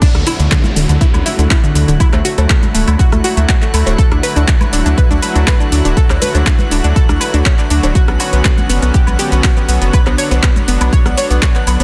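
A punchy, up-front electronic kick and a round, deep analog bass drive this expansive, hopeful progressive house drop at 121 BPM in D major, with a lush, detuned supersaw pad and a full-bodied analog pluck arpeggio with chorus and digital delay all pumping against the kick over Dadd9 moving to Bmadd9 at 8.0 seconds. A deep house kit with metallic hats, handclaps, rim click, shaker and crash cymbal fills out the groove, while woodblock, congas and cowbell with hard hands sit in the background and a downlifter sinks away by 4.0 seconds. From 1.1 seconds a glassy, drifting harmonics texture hovers high in the distance, all inside a dense, heavily limited modern master with digital ambience.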